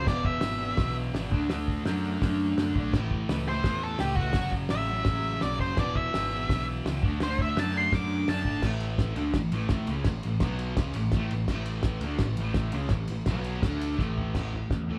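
A band playing live in one room fills a large studio with moderate reverb, giving this rowdy, swaggering garage rock excerpt a roomy punch at 168 BPM in a straight 4/4, in A major. Up front, a double-tracked fuzz guitar plays its picked riff low through the whole 15 seconds, its tone warm and distorted, over a bright, growling picked electric bass that is overdriven and direct. The cloth-damped drum kit sounds thuddy, dry and dark, with a fat snare, a tight kick and dark, rolled-off cymbals across crash, ride, hi-hat and toms. A dark octave-fuzz lead guitar enters briefly at the start, then returns from 3.5 to 8.6 seconds with a picked, distorted melody riding high over chords moving from E and D to A and F#m. The second half shifts to A, B5 and D5 power chords, and the drums close it with a fill at 14.0 seconds.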